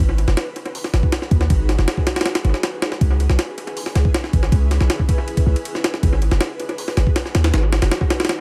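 A deep, boomy 808-style bass with a sine body, a noise layer and a fast, decaying attack sits up front in this frenetic, raw drum and bass and jungle excerpt, moving between G#m7 and C#m7 before stopping at 7.9 seconds. From 0.2 seconds a gritty, compressed, pitched-up jungle sampler kit drives along with a thumpy kick, high-tuned snare, hi-hat and ride, its tape-tinged hits thrown into analog delay. Behind them, a faint, ethereal pad of detuned sawtooth, triangle and sine voices with a sub octave holds airy, mellow chords through ensemble chorus, tremolo and built-in reverb in an echo-heavy, otherwise dry mix.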